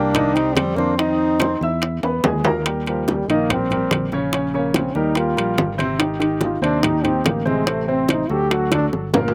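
Dry, open-air sound with little reverb frames this sunny, danceable Afro-Cuban jazz excerpt at 144 BPM, where an intimate, whispered trombone with scooped notes and light vibrato carries the melody up front and solos from 2.7 seconds, a mellow subtone tenor saxophone with slapback echo adds a brief second line until 1.8 seconds, a natural-sounding baby grand piano with short sustain provides accompaniment, a round fingered electric bass holds the low end, and ringing metal-shell timbales, hard-hand bongos and soft-handed congas in the background fill out the percussion, including two drum fills.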